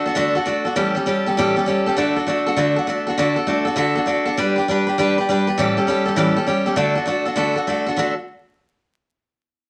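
A full-bodied, jumbo-sized steel-string acoustic guitar sits up front, picking a solo in D major from the opening until it stops at 8.1 seconds, moving through D, A7 and G chords. This upbeat, retro rock cut runs at a brisk 200 BPM in 4/4 with a swung eighth-note feel. A moderate studio reverb and a layer of vinyl crackle give it a vintage patina.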